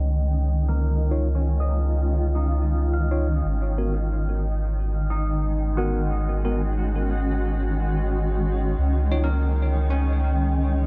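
Ambient and spacious with a meditative calm, this piece sets a cloudy, evolving granular pad of sustained chords, ring-modulated and bathed in its own reverb, over a deep, round dub sub bass with tube saturation sitting up front, while a ringing, fingerpicked concert harp enters at 0.7 s with arpeggios under a filter sweep and dub echo, and a bell-like, clean electric piano adds echoing stabs from 1.1 s to 9.3 s, all within a lightly reverberant mix.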